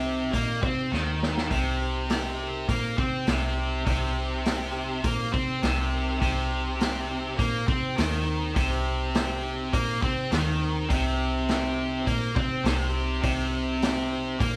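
Brooding and smoky, this blues rock and southern rock excerpt moves at 102 BPM in C minor on a single C minor chord, with a bright, double-tracked distorted guitar riff up front over a dark, round, foam-muted picked bass and a punchy vintage drum kit with a rolled-off top that enters at 0.3 seconds and plays a fill at 0.9 seconds, while a piping tonewheel organ with key click holds sustained chords through a slow rotary speaker in the background, all captured as a band playing live in one room with moderate studio reverb.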